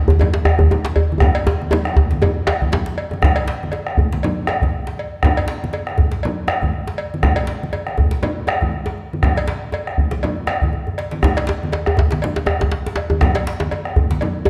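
Ringing, low-tuned congas and two djembes open this festive, driving West African drum ensemble passage at 120 BPM in 4/4 with a swung sixteenth-note feel, joined almost at once by a dry, metallic cowbell and a deep bombo that sounds distant yet sits up front. One djembe, struck with hard hands in a small room, runs throughout, while a tight, cracking djembe played with soft hands rides close and up front, dropping out during a drum fill that begins at 1.2 seconds and returning at 11.2 seconds. The recording sits in a wet recital-hall reverb with a dark production tone, cut from a longer piece.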